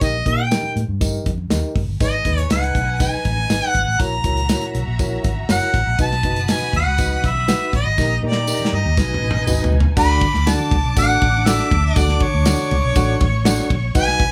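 A straight 4/4 groove at 120 BPM from a tight-kicked acoustic drum kit, jingly tambourine and very quiet, damped low-tuned congas drives this joyful, uplifting 1960s-style soul excerpt, where a vibrato-laden harmonica sings the up-front melody over a reedy electric piano with fast tremolo and a dark, round, foam-muted fingered bass, while a lush, distant bowed violin section with portamento joins at 2.0 seconds and a drum fill from 8.0 seconds leads into a closing passage on D, all in a dry sound.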